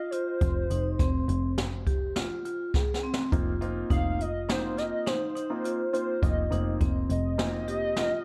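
A dark, small-room production frames this tense, brooding progressive instrumental, cut from a longer piece and moving at 103 BPM in an uneven 5/4 with a straight feel. A hollow, woody square-wave lead carries the melody up front, coloured by chorus, phaser and tape echo, over ringing vibraphone arpeggios, brushed drums with a high-tuned snare and boomy kick, and a round, overdriven picked bass holding F1. After a drum fill, a polished baby grand piano enters at 3.3 s with rootless accompaniment chords.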